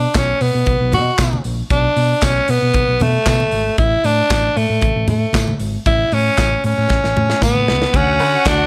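A raspy, up-front tenor saxophone carries the melody over a round, dark hollow-body electric bass from the opening moment of this glamorous, joyful disco clip, while a studio drum kit with tight kick, snare, hi-hat and handclaps joins alongside a distant, jingly tambourine and very quiet, hard-handed congas. A drum fill arrives at 6.9 seconds, and at 7.9 seconds a lush bowed string section with expressive vibrato enters for the closing moment. Light reverb lends the whole a small-room ambience.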